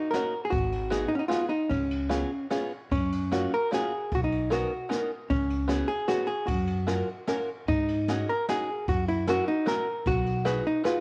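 A lilting three-beat waltz sways with a rubato give-and-take in this short slice of a longer musette piece, nostalgic and charming in mood. Up front, a clean, compressed hollow-body electric guitar carries the melody in a dark, fingered tone, while a fingerpicked open-back banjo sits close beside it with a twangy, plunky, percussive accompaniment colored by cassette tape. Entering at 0.5 seconds, a pizzicato upright bass on gut strings adds a woody, thumpy low end. Further back, a brushed jazz kit with a boomy kick, medium-tuned snare and dark ride cymbal sounds distant and roomy, also carrying a cassette tint. The harmony drifts through lush seventh, ninth and suspended chords before settling on a B6, and a moderate spring reverb gives the homemade cassette recording a gentle, intimate glow.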